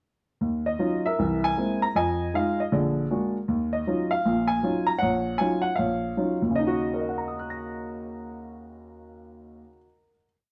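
A warm baby grand piano opens this brief, complete solo jazz piece with a swung, smoky and cool feel, pairing a stride bass line and close voicings with a motif-based melody built on short hook phrases. The piano sits up front with a natural tone in a moderate studio reverb and a dark production, moving through rich minor ninth, augmented and altered dominant harmonies before arriving at a final chord at 6.6 seconds.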